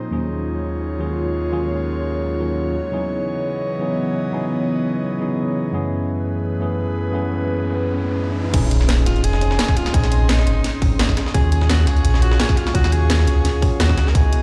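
Soulful and dreamy, this liquid drum and bass excerpt opens on an airy, breathy pad holding sustained minor eleventh chords, its chorus-thickened tone gently pumping, alongside a clean tine electric piano played up front through a combo amp with phaser and delay. A riser and impact sit in the background from 7.4 seconds, building into the drop at 8.5 seconds. There the groove arrives all at once: a tight, up-front electronic kick, a layered garage kit with a cracking snare and low-passed hats and crash, and a gritty, pitched-up breakbeat sampler kit tucked behind with high-passed hats and snare, the drums carrying a tape-warm character and a light swing. A deep, mellow sine sub bass with an octave layer enters with the drop, sitting up front with tube saturation. At 9.1 seconds an edgy, forceful alto saxophone takes the solo melody with vibrato, roughened by vintage 12-bit sampler grit and digital delay, all set in a large studio reverb that suggests a big system in a bare room.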